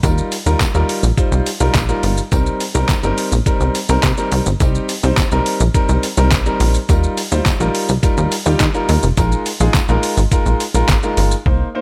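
A straight 4/4 pulse at 105 BPM drives this dance-pop excerpt in C minor, set by a detuned 8-bit digital drum machine whose thumpy kick, medium-tuned snare, handclaps, hi-hat and shaker sound overdriven, sampler-style and up front, with the character of a large room. Beneath it, a plucky analog bass built from sawtooth, square and triangle tones with wave-folding delivers a punchy, funky line from F1 to Eb3, its fast-attack filter pluck decaying and its level pumping to the sidechain. A smooth, vintage grand piano, also up front and pumping, carries the accompaniment between G3 and C5 over a Cm7 chord that gives way to Ebadd9 at 6.9 seconds and Bb7sus4 at 9.2 seconds. A close, jingly acoustic tambourine sits very quietly underneath, stopping at 11.3 seconds. The mix is dry and loud, leaving a driving, confident groove in the foreground of this short cut from a longer piece.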